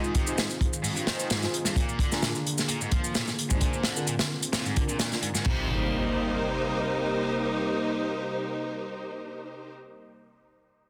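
Breakbeat in C minor at 130 BPM with a light swing, this funky, energetic excerpt is driven by a crunchy, gritty breakbeat kit with a tight kick, dark cymbals and a shaker, while a detuned sawtooth pad holds sustained chords under sidechain pumping and an overdriven, double-tracked guitar riff runs through dub echo until about 5.7 s. Bowed, up-front string stabs, filtered and echoed, carry on from 0.3 s across a move from Ab6 to Bb7 and then Cm7. At 5.5 s an electronic impact lands as the drums drop away, leaving pad and strings in a small, reverberant room within a dense, heavily limited master.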